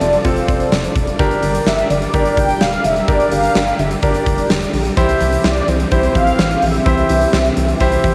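A mellow synth brass carries the melody, its brassy, round tone colored by chorus, vibrato and a slightly worn cassette-tape sheen. This melancholic, nocturnal synth-pop fragment, cut from a longer piece, moves at 127 BPM in a straight 4/4 over chords of F, G minor from 1.2 seconds and C from 5.0 seconds. Beneath it, a huge arena drum kit pumps with a punchy kick and fat snare, while a rubbery, hollow square bass bounces low. A brilliant grand piano joins at 0.2 seconds, intimate and polished, its action noise audible and its notes ringing long. A lush, airy unison pad, treated with chorus and phaser, sustains chords in the background alongside a soft, gentle pluck whose arpeggios trail through analog delay. Moderate spring reverb and small room ambience give the home cassette recording a close, hazy feel.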